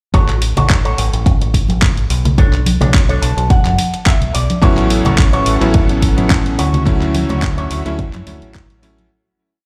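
A dry, close mix with a punchy, tape-warm electronic kick up front and a stone-room tone from a big system in a bare space carries this sunny, feel-good nu-disco piece in A major at 107 BPM, swung lightly on the sixteenths. A four-on-the-floor kick, gritty sampler-style claps and hi-hats, hard-handed congas and a round, dark fingered bass riff drive the groove, while a twangy envelope-filtered guitar plays funk chord rhythm through chorus and tape echo, with a clean guitar fill from 2.9 to 4.6 seconds. At 4.6 seconds a cutting electric grand piano with held, pushed rootless chords and a lush, sawtooth string machine pad in the background enter over A6 and Dmaj9 harmony, both pumping against the kick, before the piece fades out from 6.1 seconds.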